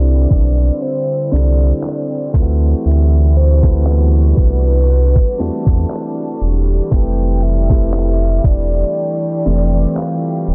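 A deep, sine-toned sub bass with its octave sits up front in this smooth, tender contemporary R&B piece at 59 BPM with a lightly swung 16th feel, as a round, dark octave-layered synth lead carries the melody through chorus, phaser, vibrato and delay over polished grand piano, reedy gut-string studio strings pumping with sidechain, and a detuned, thumpy 8-bit drum machine of kick, hi-hat and handclaps entering at 0.3 s, all moving from Cmaj9 to D13 and Fmaj9#11 under a filter sweep in a dry, dense, heavily limited mix.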